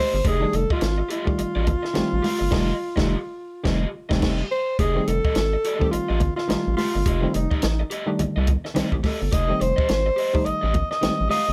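Funk at 106 BPM in F mixolydian, this short, playful passage is cut from a longer piece and rides a swung sixteenth-note feel over an opening F9 chord. A breathy alto saxophone carries the melody up front with pop-style vibrato, sitting between Eb4 and Eb5. Beneath it, a round analog bass with a deep, plucky filter attack anchors the low end, while a muted, stringy clav supplies mellow stabs through a combo amp and a raw garage guitar adds overdriven, picked accompaniment lower in the mix. A compact cocktail drum kit, dry and natural with dark cymbals, a high-tuned snare and a tight kick, drives the groove, and congas played with soft hands ring quietly in the background. The band hits a shared accent from 2.5 to 4.8 seconds before the opening section repeats, all within a light reverb.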